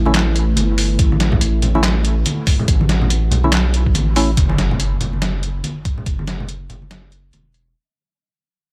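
Cavernous and brooding, this deep dubstep excerpt moves at 142 BPM in a swung, half-time 4/4, opening on a drop over an A chord where a dark, detuned sawtooth pad with chorus and built-in reverb sits in the background beside hollow, chorused organ stabs trailing dub echo, all anchored by a thick, saturated sine sub bass held up front. A muffled, pitched-down sampler-style kit of handclaps, hi-hat and snare, overdriven and re-recorded in a small room, runs with soft-handed vintage congas, while a thumpy overdriven electronic kick enters at 1.0 s and drops out briefly before 4.4 s. At 4.4 s the pad and stabs stop, the harmony shifts to Esus2, and a very quiet electronic impact sounds as the remaining parts fade out, all in a dry mix.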